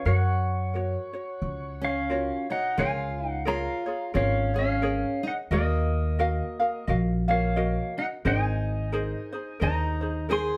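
A clean, compressed pedal steel guitar, played with fingerpicks, sings the melody up front with slide and volume swells over a light, fingerpicked ukulele in this sunny, relaxed Hawaiian piece at 88 BPM with a swung feel, joined by a woody, growly pizzicato upright bass and, from 1.8 s, a picked steel-string acoustic guitar second line with audible finger squeak, the band playing live together in one room with moderate reverb.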